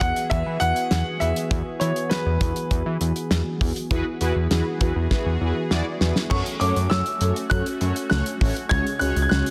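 Cool and melancholic, this synth-pop fragment at 100 BPM sets a clear, up-front grand piano melody with digital delay over a resonant, evolving sawtooth pad with chorus, a fat, detuned analog bass and a dry, damped 70s drum kit with dark cymbals and a fat snare, while mellow, brassy synth brass with chorus and phaser enters at 3.9 seconds, a drum fill arrives at 5.1 seconds, and the chords move from Eadd9 to F#m and C#sus4 inside a dense, heavily limited modern master with light studio reverb.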